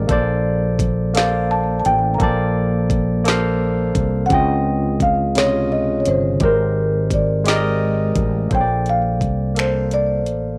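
A barky, lightly overdriven tine electric piano and a punchy fretless bass open this tender, slow six-eight R&B excerpt, soon joined by a mellow, round marimba melody with slapback echo. An electronic drum kit, re-recorded in a small room, adds a knocking kick, woody snare, metallic hi-hat and finger snaps, all set in a digital ambience. The harmony moves through lush major-ninth chords before a new section begins at 8.5 seconds.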